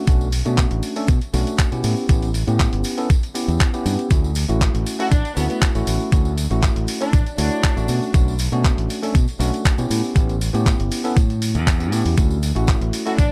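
Dry and up front, with a faint lossy grit, this feel-good nu-disco clip cut from a longer piece has a sunny, straight lift. An overdriven, thumpy electronic kick sits at the front, backed by a compressed, dusty sampler-style kit of handclaps and hi-hat and a tambourine tucked into the background. A bright fingered electric bass plays directly under a bell-like tine electric piano, whose clean chords carry a subtle chorus, sidechain pumping and dub echo. The harmony cycles through Bm7, A7 and Dmaj7. A dark chamber violin section enters at 5.0 s with expressive, bowed vibrato and a touch of tape echo, drops out at 7.9 s, and returns just as the clip ends.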